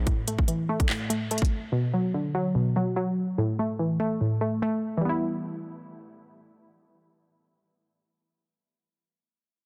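Dark, cold drill hip hop at 145 BPM in a half-time 4/4 feel in E minor, this excerpt opens with a glassy, detuned wavetable pluck, joined at 0.1 seconds by an electronic drill kit of hard-clipped kick, crisp hi-hats and handclaps, re-recorded in a large room and up front, that stops at 1.5 seconds. The pluck, with chorus, a noise layer and a low-pass filter sweep, carries the crystalline, fast-attack, decaying accompaniment through A5, Bm and a shift to Em at 5.0 seconds, all in a dry, dense and heavily limited modern master.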